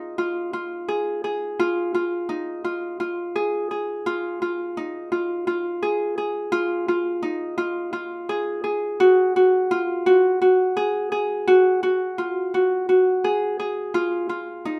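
A solo Celtic harp opens this short contemporary instrumental excerpt, its ringing, fingerpicked tone sitting up front and captured by close, detailed microphones with light reverb. Moving at 170 BPM in eighths over a 7/8 metre, the restless, playful line stays within a narrow compass from Eb4 to Ab4, hovering on an Ebsus24 chord before shifting to Fm at 9.0 seconds. The harmony returns to Ebsus24 at 14.0 seconds, and the harp sounds until 14.8 seconds.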